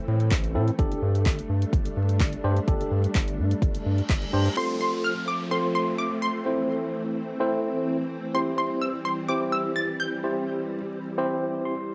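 A bright, punchy unison pluck carries the melody from 4.6 s in this carefree, euphoric dance-pop excerpt in C major at 127 BPM, its detuned sawtooth layers treated with plate reverb. Beneath it, a worn, slightly out-of-tune tine electric piano with light overdrive and sidechain pumping plays accompaniment, adding a short fill at 11.4 s, while a silky string machine holds soft sustained chords through ensemble chorus. In the opening section, a round, wave-folded analog bass pumps under a deep house kit of deep kick, dark hats and handclaps; an electronic reverse cymbal and downlifter enters at 3.8 s, and the whole has a home-cassette character with vinyl crackle and a moderate booth ambience.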